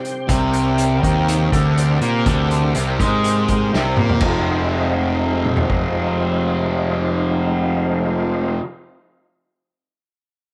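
Trippy and dark, this psychedelic rock excerpt moves at 122 BPM in F dorian, opening on a thick, gritty overdriven tonewheel organ holding sustained chords through a slow rotary speaker and chorus vibrato, joined from the first moment by a vintage acoustic drum kit. A double-tracked fuzz guitar riff with distortion and phaser sits up front alongside an overdriven, picked fuzz bass, while the drum kit, with dark cymbals, a punchy kick and a pumping room sound, plays a fill from 3.7 to 4.2 seconds before dropping out at 5.8 seconds. Moderate spring reverb and small room ambience color the sound as the harmony shifts from C5 to Fm7 at 4.2 seconds.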